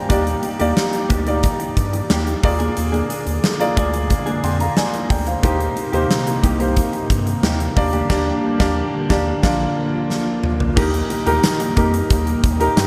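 A concert grand piano and a vintage string machine voicing cellos open this romantic, uplifting 1980s-style pop passage, cut from a longer piece. The piano carries the accompaniment up front with an intimate tone, deep bass and audible action noise, while the string machine holds full, mellow sawtooth chords with a sub octave and slow attack, treated with ensemble chorus and set in the background. Almost at once a huge arena drum kit arrives with a punchy kick, medium-tuned snare, bright cymbals, hi-hat, tambourine and toms, joined by a round, dark analog bass and a clean, fingered electric guitar riff sitting further back, compressed and coloured by lush chorus and analog delay. The harmony moves from Ebmaj7 through Bb7, Cm7 and Gm to Bb, and the band hits a shared accent from 8.1 s, with a drum fill at 10.1 s leading into a new section that lands on Eb at 10.8 s. Moderate plate reverb soaks the whole mix in a dreamy haze.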